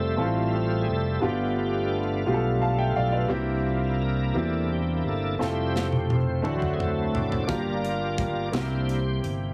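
The bright tonewheel organ leads this short slow gospel excerpt, taking a solo across its full 9.5 seconds with full, shouting chords that carry key click, light overdrive, chorus vibrato and a slow rotary speaker under plate reverb. Set in F major in a straight 6/8 at 58 BPM, the mood is jubilant and hopeful as the harmony moves from Fmaj7 through G7 and C7, then back to Fmaj7, D7, Gm7 and C7. A clear, natural grand piano sits up front in accompaniment with its own plate reverb, while a fingered electric bass adds a dark, round, directly amped low end. The acoustic drum kit enters at 5.4 seconds with a fill, its hi-hat, punchy kick, medium-tuned snare and toms sounding airy and polished in a small room. Overall the recording has light reverb, small room ambience and a heavily compressed, radio-like sound.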